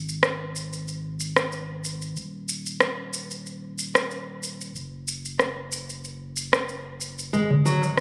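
A deep, round sine sub bass opens this meditative, hypnotic organic downtempo excerpt at 93 BPM, joined almost at once by an up-front electronic shaker and rim click with a lightly swung 16th-note feel. Near the end, at 7.3 s, a dark, fingerpicked nylon-string guitar with fresh strings enters with short arpeggios through a digital delay. Just after, at 7.5 s, a crisp, close and dry metal-shell darbuka played with soft hands joins, all set in a lush hall reverb with a phone-in-the-room character and compression.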